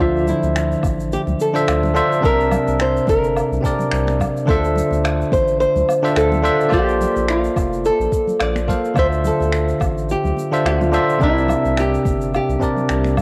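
A wistful, relaxed sunset chillout groove in D minor at 107 BPM with a gentle 16th-note swing opens on a bell-like, up-front tine electric piano, a fingerpicked nylon-string guitar melody coloured by cassette-tape grit and tape echo, a round, deep analog bass, very quiet congas, and brushed woodblock, shaker and finger snaps, with a soft electronic kick joining at 0.8 s, all set in a moderate spring reverb on a homespun cassette recording as the chords cycle through Dm9, C7 and Bbmaj7 in this 13.2-second excerpt.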